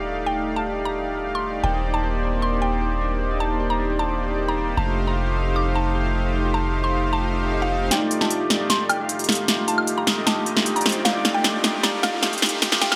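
Future bass at 153 BPM in a half-time feel, bright and euphoric, where a smooth, detuned supersaw riff and a deep, sine-toned 808-style bass open together under a woody, round mallet-like pluck melody carrying chorus, phaser and dub echo, a ringing fingerpicked concert harp arpeggiates in the background from 1.6 seconds, a very quiet swell and riser creeps in at 7.3 seconds, and at 7.9 seconds the bass stops as a punchy, layered big-room drum kit with crisp hats and woodblock arrives with a fill, joined by a filter sweep on the supersaw, to drive the build-up in this cut from a longer piece.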